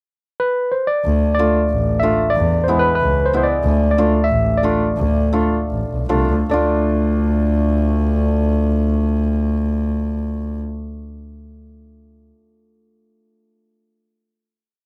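A barky, bright tine electric piano opens the short klezmer piece at 0.4 seconds with a pickup into a modal, ornamented melody, clean and direct in tone. A bowed double bass enters at 1.0 seconds, clear and earthy with a biting edge and light vibrato, sitting up front with a figure in quarters. A hammered dulcimer follows soon after, shimmering and ringing as it places triad chords on the off-beats beneath the tune. The straight 2/4 feel moves through D minor and E before returning to D minor, slowing down along the way until a final chord rings from 6.5 seconds. The mood is bittersweet yet festive, captured in a dry, close 1970s-style studio sound.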